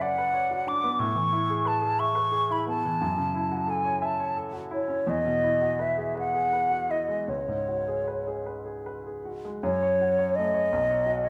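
A hollow concert flute carries the melody up front, its pure, close-miked tone shaded with vibrato and tongued articulation as it sings between C#5 and D6. Beneath it, a clear, present grand piano supplies the accompaniment across a broad span from B1 to E5, both instruments sounding together from the opening to the close at 11.3 seconds. This impressionist classical duo moves in a flexible, rubato 6/8 with a wistful, mysterious mood, drifting through soft-edged harmonies such as Amaj9, F#m7 and Eadd9 before a suspended C#7sus4. At 9.6 seconds a new section begins on F#m and turns toward Badd9, and the passage ends there as a fragment of a longer piece. A moderate recital hall reverb surrounds the pair, lending the intimate performance a gentle sense of space.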